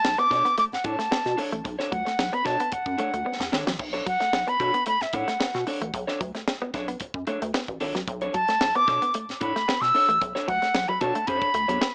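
Cool and funky, this 112 BPM B minor excerpt rests on a Bm9 chord, with a breathy, close-miked concert flute carrying the melody up front through tape echo, over a rubbery, dark square-wave bass and a dry, tight funk kit with a high-tuned snare that plays a short fill at 3.3 seconds. A slightly broken-up, picked guitar through a small old amp adds lo-fi accompaniment, while a clean, fingered semi-hollow guitar plays a compact riff. Light reverb, a small-speaker tone and a faint mains hum colour the sound.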